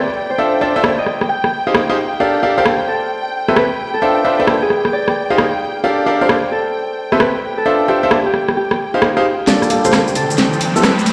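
A thumb-plucked Celtic harp rings out with tape echo over a dark, woody violin section holding lush bowed chords, soon joined by brilliant, short-sustain piano stabs and an up-front garage kit with a cracking snare and filtered hats that sets this moody, skippy two-step UK garage piece swinging, before a rumbling detuned saw bass, grainy maracas and a drum fill enter at 9.5 seconds and an electronic riser at 9.9 seconds pushes the build-up, the mix heard through vinyl crackle and the reverb of a bare stone room.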